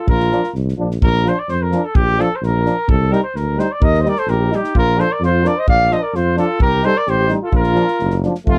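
A dry, close 1970s-style studio sound frames this festive, virtuosic Balkan brass band passage in Bb major, cut from a longer piece and moving at 129 BPM in a straight 2/4. A warm cornet carries the melody up front over a mellow tuba bass with a smooth top and an acoustic drum kit with a punchy kick and a medium-tuned snare, while a clear euphonium with light vibrato and a soft attack and a distant, roomy trombone fill out the accompaniment. A flugelhorn in classical style adds a second line, briefly at the start and then again from 3.8 s, as the chords move through Bb, Cm and Eb.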